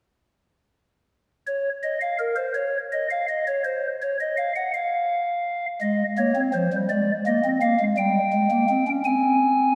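Stately and joyful, this short classical passage is a baroque-style three-part fugue for pipe organ, heard as a fragment cut from a longer piece. It moves at 56 beats per minute in dotted quarters, in a straight 6/8 lilt. A single stopped flute stop carries the whole performance alone from 1.5 to 9.8 seconds, its soft, hollow tone touched with chiff as the notes speak and placed up front in the sound. The opening lines sound before any harmony settles, then chords on Ab, Bb7 over Ab, G diminished and Ab over C pass by in the closing seconds. A wet church reverb surrounds the organ with a long, lingering decay, lending the mellow voicing a spacious sacred glow.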